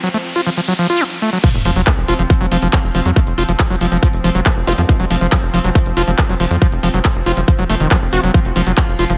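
A squelchy, gritty acid bass riff opens this intense, hypnotic psychedelic trance excerpt, distorted and pumping with tape echo, while a riser, sub drop and zap build through a short break. At 1.4 seconds the drop lands with a punchy, up-front kick and a techno kit of metallic hi-hats, handclaps and crash cymbal, joined a moment later by a tight, driving sawtooth sequencer bass with a fast filter pluck. Behind them a bright, pulsing gated texture holds chorused, reverberant chords that pump in time, all set in light digital ambience.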